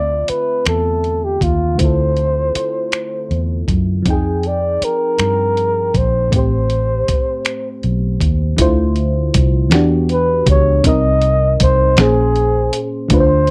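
A breathy, whispered flugelhorn carries the melody up front with dark vibrato and a slapback echo, setting a sultry, late-night mood in this slow six-eight R&B excerpt cut from a longer piece. Beneath it, a mellow FM electric piano with a warbling chorus plays rich minor seventh and ninth chords, while a round, foam-muted fingered electric bass sits punchy and close. A gritty, tape-warm sampler-style drum kit with finger snaps, hi-hat, a thumpy kick and snare joins at 0.3 seconds, all captured in a dry, close 1970s-style studio sound.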